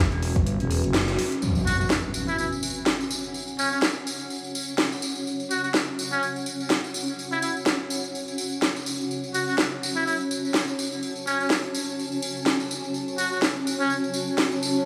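A buzzy, metal-muted trumpet takes a jazz-style solo from 1.7 seconds, its close-miked tone marked by light vibrato and scooped notes and trailed by tape echo, over a gritty, swaggering bass house groove with a swung feel. A growling, thick FM bass opens the cut and drops out at 1.2 seconds, while an overdriven electronic kit with a cracking snare and bright hats, a jingly tambourine and a blurred, evolving granular pad with built-in reverb and sidechain pumping carry the track. An electronic impact hits at 1.4 seconds, and a lush hall reverb surrounds the whole.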